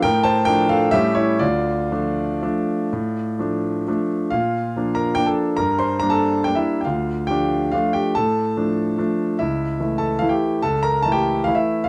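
A 3/4 waltz pulse with flexible rubato, drifting between 115 and 157 BPM, carries this wistful, bittersweet classical piano piece in D minor, where a solo grand piano, clear, intimate and up front with long sustain and audible action noise, ranges from C#2 to C6 through chords moving from Dm/A and A7 to Bb, Gm and finally A/C# at 9.4 seconds, captured by close, detailed microphones in light reverb with a faint mains hum in this short portion cut from a longer work.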